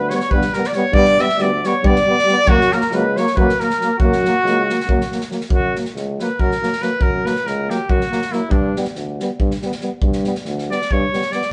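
Fiery and restless, this cut from a longer Balkan brass band piece drives at 278 BPM in eighths through a straight 7/8 in F# phrygian dominant, moving from G to F# and back to G. A clear trumpet with light vibrato leads the melody over a warm flugelhorn second line that stops at 5.3 s, while a vintage-toned tuba holds the bass, a present trombone and mellow euphonium fill in the accompaniment, and an up-front acoustic big-band drum kit with a punchy kick and medium-tuned snare keeps the beat. From 5.5 s the trumpet takes a solo, and the whole band sounds live in a moderate stone room, with nothing above 10.7 kHz.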